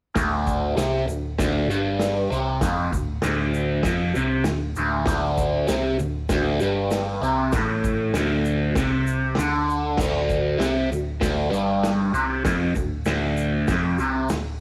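Raw and rowdy, this garage rock excerpt at 98 BPM in 4/4 opens at 0.2 seconds on a D5 chord, with a bright, double-tracked, overdriven guitar riff up front carrying phaser and cassette tape grit, a round, dark hollow-body picked bass beneath it, a vintage acoustic drum kit with a punchy kick, medium-tuned snare, hi-hat, dark crash and a pumping small-room sound with a rolled-off top, and a grainy egg shaker tucked in the background, all captured as a home cassette recording with studio reverb.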